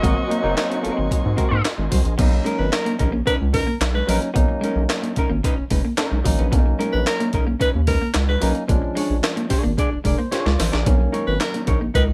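A straight 4/4 funk groove from a gritty, pitched-up breakbeat sampler-style kit with thumpy kick, high-tuned snare, handclaps and a drum fill at 10.3 seconds drives this cool, hypnotic passage cut from a longer piece, where a round, deep analog bass sits up front beneath bell-like tine electric piano stabs, a twangy clean electric guitar riff, dark fingered hollow-body jazz guitar and a breathy tenor saxophone second line with scooped notes, while a nasal overdriven lead guitar with a parked wah stops at 1.6 seconds and a smooth tonewheel organ with key click and stopped rotary speaker drops out at 2.1 seconds.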